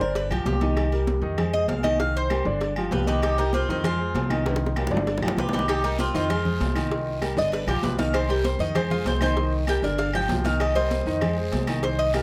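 A driving, straight 4/4 salsa groove at 195 BPM in C minor cycles through G7, Cm7 and Fm7 chords in this fiery cut from a longer piece. Up front, a metallic, picked Cuban tres with double strings takes the solo over a polished baby grand piano with long sustain and a dark pizzicato upright bass. Soft-handed congas and bongos, cowbell, ringing agogo bells and timbales, and faint woody claves sit in the background of a large studio room, with a drum fill at 4.5 seconds and a raspy guiro joining at 5.7 seconds.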